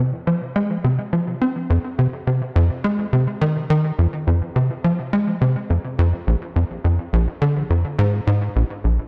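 A tight, punchy sequencer bass plays alone from 0.0 to 9.0 s in this hypnotic, cosmic ambient excerpt at 105 BPM in a straight 4/4, its up-front sawtooth, wave-folded and ring-modulated tones plucked by a fast-attack filter and decaying through lush chorus and analog delay, set in a moderate plate reverb within a dark, warm production.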